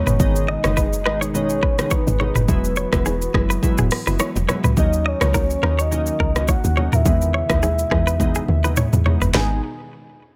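A deep, round log drum bass sits up front with an electronic afro-pop kit of sharp snare and metallic hats in this smooth, hypnotic afrobeats excerpt at 105 BPM in G# minor, as a soft octave-layered synth lead carries the melody over glassy digital keys, a twangy clean electric guitar riff, a hollow flute-like pad in the background and very quiet close congas and bongos, moving through G#m, Eadd9, D#m7 and C#m7 with a drum fill from 8.2 to 9.3 seconds in a dry room.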